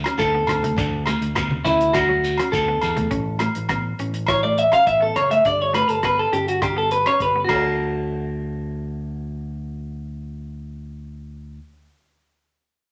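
A carefree, danceable highlife guitar band excerpt in D major at 103 BPM, where a bright, twangy clean electric guitar sits up front spinning arpeggios as a solo over D, A and G chords in a club-like reverb. Beneath it, a punchy fingered electric bass and a muffled, lo-fi soul drum kit with a tight kick, rim clicks and dark cymbals join ringing agogo bells, a grainy, distant shekere, low-tuned congas and a hollow-body semi-hollow guitar in the background. The shekere and congas drop out by 3.1 seconds, and after the drums, bells and rhythm guitar stop near 7.8 seconds, only the lead guitar and bass carry on.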